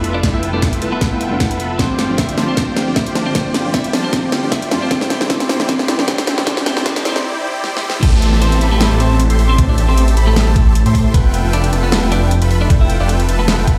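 Swung sixteenths over a half-time 4/4 pulse drive this emotional, dreamy future bass passage, where a knocking electronic kick and a tape-warm dubstep kit with a huge snare, bright hats and crash pump beneath sidechained layers: lush supersaw chords behind a low-pass filter, a thick detuned saw bass up front, a soft round pluck in the background, and a clean, scooped electric guitar carrying the melody through delay. The first 8.0 seconds form a build-up with drum fills and a filter sweep, a very quiet riser and downlifter arrives at 4.6 seconds, and the pluck stops at 7.2 seconds. At 8.0 seconds the drop lands on Am7 as an airy, full-bodied lead enters with vibrato and dub echo, the mix sitting in a large studio reverb that sounds like a big sound system in a bare room.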